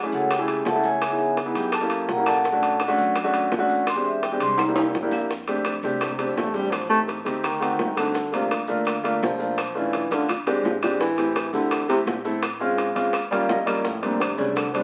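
Afro-Cuban jazz at a lively, danceable 168 BPM, cut from a longer piece, opens with a ringing, metallic vibraphone solo with slow motor vibrato over an intimate, up-front grand piano whose action noise is audible, a thumpy gut-string upright bass, ringing metal-shell timbales, tight high-tuned bongos, woody claves and grainy maracas. After a drum fill, the music settles into F major at 5.3 s, and a dark, breathy baritone saxophone takes an up-front, whispered solo from 6.0 s with light vibrato and a soft attack. The piano adds a brief fill near the end, all heard through wet studio reverb and the crackle of a very old 78 rpm record.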